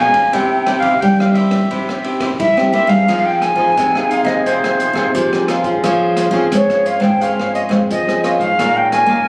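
Bittersweet yet lively, this short cut from a longer samba and choro piece moves in a straight four. A clarinet with a soft attack, scooped notes and jazz-style vibrato takes a solo over the opening 3.1 seconds. An airy silver concert flute enters at 2.4 seconds, sitting up front despite a distant plate-reverb sheen, and carries the tongued melody with vibrato as the harmony moves through Fm7, Dbmaj7 and Bbm11. Underneath, a crisp picked cavaquinho and a fingerpicked classical nylon-string guitar share the accompaniment. A second nylon-string guitar with fresh strings and audible finger squeak holds the bass from the background. An open jazz kit with dark cymbals, a boomy kick, hi-hat, ride, crash and rim clicks keeps a smooth, rolled-off pulse, and the whole performance, captured on a phone in the room, carries a compressed club ambience.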